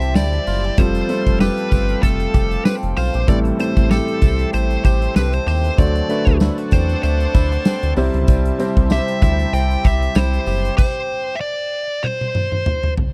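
Glossy and romantic, this excerpt of 1980s-style pop moves at 96 BPM in 4/4 with a light sixteenth-note swing, sitting in C major over a progression that drifts from C through Fadd9, Am7 and D7 before returning home. An overdriven lead guitar with a nasal, parked-wah tone carries the melody, while a concert grand piano with audible action noise and long sustain fills out the accompaniment beneath it. A swirling, detuned analog pad holds sustained chords through phaser and chorus in the background, and a clean, direct-recorded electric guitar plays a compressed, picked riff bathed in lush chorus and tape echo. A round, deep analog bass sits up front alongside a huge arena drum kit with punchy kick, medium-tuned snare, bright cymbals and toms, with a jingly tambourine tucked far behind. At 10.8 seconds the band drops into a stop, while the lead guitar rings on until 12.9 seconds and the drums launch a fill at 12.0 seconds, all captured in a dry, close 1970s-style studio sound with little reverb.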